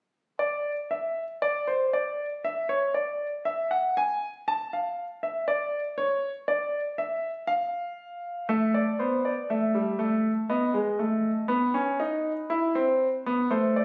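A present, polished grand piano plays a solemn yet driving baroque-style three-part fugue alone at 60 BPM in 4/4, its long sustain ringing up front in a moderate stone-room reverb captured on a phone, with the harmony arriving on A minor at 8.5 seconds and passing through B7 to an open E5 at 12.5 seconds in this fragment cut from a longer piece.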